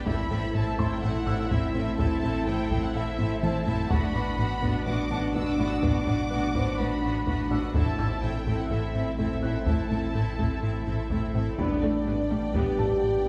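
Heard from farther back in a reverberant recital hall, this tense, brooding stretch of hybrid orchestral and electronic film score moves at 125 BPM in A dorian. A rich violin section carries the melody over a second, intense violin line, focused violas, a present French horn section holding chords, a warbly, nostalgic tape-like pad, and a low end of thick sub bass, punchy analog bass riffing, and very quiet bowed cellos and double basses. Very quiet taiko drums add a fill from 3.2 to 3.9 seconds, while a glassy wavetable pluck arpeggiates and a felt-muted upright piano with digital delay adds mellow, boxy texture, and a tight trombone section joins with sustained chords at 11.6 seconds as the harmony shifts to G over A.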